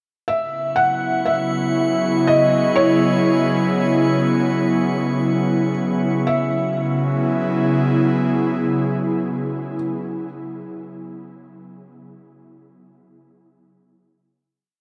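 A felt-muted upright piano opens at 0.3 s with a soft, mellow, intimate melody that wanders freely in a high register, trailed by a diffuse ambient delay. This is a reflective, serene ambient piece at 60 BPM in 3/4 and C# minor. An airy, breathy pad, built from a detuned sawtooth and triangle with a noise layer and chorus, sits up front holding slowly shifting sustained chords, while a calm, glassy texture of drifting overtones and a bright held high note floats above until 6.3 s, when a final chord takes over beneath a huge, wet reverb.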